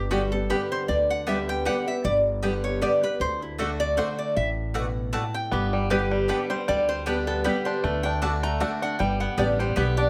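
A bright, nasal lap resonator guitar carries the slide melody up front in this lively, rustic bluegrass tune at 155 BPM in 3/4 with a light swing in G major, backed by warm picked steel-string acoustic guitar, a thumpy, gut-strung upright bass and woody double-strung mandolin stabs. At 5.5 seconds a second, metallic resonator line appears briefly and a twangy, percussive banjo enters with arpeggios carrying a slapback echo. A moderate, large studio reverb surrounds this short section cut from a longer piece.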